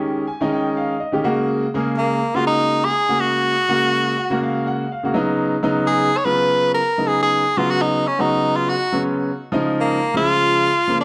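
Jazz with a funky, slick swing at 123 BPM, this short fragment of a longer piece moves through Eb9sus4, Ab9sus4 and Db9sus4 chords. A bright, brilliant concert grand piano accompanies with deep bass and long sustain, adding fills at the start and again at 3.9 seconds. From 2.0 seconds an edgy, punchy tenor saxophone takes the up-front solo melody, forceful and present, with vibrato, scooped notes and a plate reverb, all set in a large studio room and a dark production.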